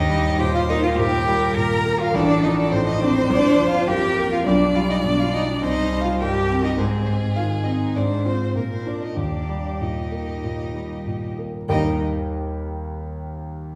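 Lively and graceful, this quick classical-period movement for piano quartet moves at 94-105 BPM in 4/4 with a rubato feel, in Eb major and tuned to A4 = 438 Hz. A clear, focused violin carries the melody with vibrato, while a second, rich-toned violin and a smooth, close cello supply bowed supporting lines over a warm, intimate concert grand piano whose deep bass and audible action noise sit up front. The strings stop at 12.0 seconds, leaving the piano alone until this fragment of a longer piece ends at 13.8 seconds, all heard from further back in a recital hall with wet reverb.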